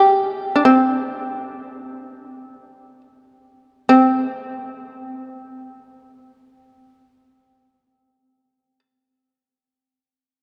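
Japanese traditional music in a meditative, austere mood, this piece cut from a longer work features a solo shamisen, plectrum-plucked, buzzing and percussive, sitting up front with a powerful presence, slowing down through the opening 3.9 seconds before ringing out at 8.8 seconds into a moderate cathedral reverb within a dark production.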